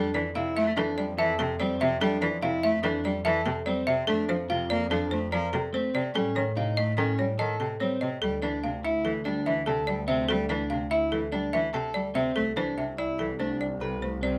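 Urgent yet meditative, this minimalist pattern piece is a fragment cut from a longer work, moving at 145 BPM in a straight 5/4 and tuned slightly low, with A4 at 437 Hz. A folk marimba played with hard mallets carries the melody up front, its hardwood bars sounding woody, dry, rustic and bright. Beneath it, a single bowed cello, also up front, supplies expressive accompaniment with vibrato, a soft attack and portamento. An electric guitar at the edge of break-up picks compressed arpeggios, while a studio double bass section bows a focused bass line with a smooth top. The harmony begins in F major, drifting from Fmaj9 through F6 to A7#9, then turns to D minor at 8.2 s with D7sus2 and settles on Cmaj9 at 12.4 s. All four parts play throughout the 14.4 seconds, framed by light reverb.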